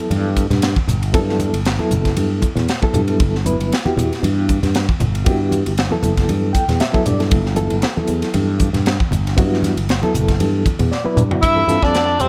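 A lightly swung sixteenth-note groove in 4/4 drives this soaring, funky electric jazz fusion excerpt, built on a crisp, up-front drum kit with a punchy kick and high-tuned snare, bright congas tucked in the background, and a growly fretless bass with subtle chorus beneath a reedy electric piano shimmering with fast tremolo and adding fills. After a drum fill, a breathy, intimate tenor saxophone enters up front at 11.4 seconds with scooped notes, vibrato and slapback echo, and a crunchy, double-tracked overdriven guitar joins on a second line. The mix is dry, with little reverb.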